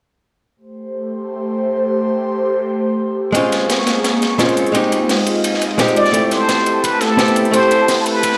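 A lush hall reverb and bare-room sound wrap this melancholic liquid drum and bass excerpt at 172 BPM, where an airy, breathy, detuned pad holds chords over Am7, Bbm7 and Fm7 from 0.7 seconds, a dark, hollow-body archtop guitar and a gritty breakbeat kit with a high-tuned snare and crisp electronic hi-hats enter at 3.3 seconds, and a brilliant plunger-muted trumpet carries the melody with a delay from 6.0 seconds into a build-up at 6.1 seconds as a knocking electronic kick joins in the background.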